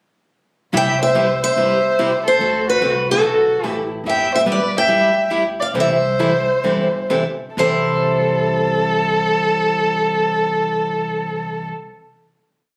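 Lively and charming, this short jazz manouche piece puts a bright, fresh-stringed picked guitar up front with a motif-based melody touched by slapback echo, while a single bowed violin adds an expressive harmony line mostly in thirds, full of vibrato, soft attacks and portamento. Beneath them, a boxy plugged-in parlour guitar keeps four to the bar with short accents on two and four, and a woody, thumpy gut-string upright bass plays two-beat root and fifth with walk-ups. The group slows from 4.1 seconds and settles onto a final chord at 7.6 seconds, all captured on a phone in a room with club reverb and compression.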